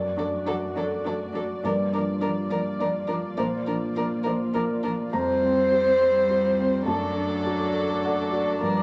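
A felt-muted upright piano, mellow and close, opens this tender, intimate neoclassical fragment in a rubato 3/4 at 103 BPM, with a dark chamber string ensemble holding soft-edged sustained chords behind it. At 0.2 seconds a single up-front violin sings a woody, sul tasto melody with vibrato, while a pure, floating cello line and a distant, shadowy viola sit quietly in the background. The harmony moves from D/F# through Gm7, Bbadd9 and Fsus2 before returning to D/F#, all set in a lush, large studio reverb.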